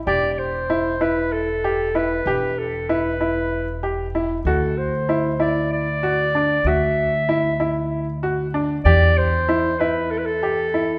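Contemporary chamber music in a straight 7/8 at 191 BPM (eighths) in E minor, pensive and hypnotic, with a punchy, vintage-toned solo clarinet singing a classical-style melody up front over clear, short-sustained baby grand piano arpeggios and a woody, growly pizzicato upright bass, all set in a moderate concert hall reverb as the harmony moves from Em to Dadd9 at 4.5 seconds and back to Em at 8.9 seconds in this excerpt from a longer piece.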